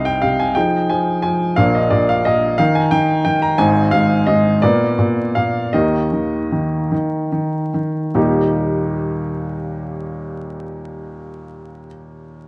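In a 6/8 with free rubato at roughly 48-60 BPM to the dotted quarter, this cheerful, graceful classical-period sonatina in Eb major, tuned to A4 = 441 Hz, eases into a slowdown from 2.6 s before settling onto an Eb chord as a new section begins at 8.1 s. A clear, natural-sounding baby grand piano plays solo throughout, ranging from Ab1 to Bb5 with long sustain, sitting up front and moving through chords like Cm, Fm7, Bb and Ab. Close, detailed microphones catch a moderate recital-hall reverb and a bed of vinyl crackle in this short passage cut from a longer piece.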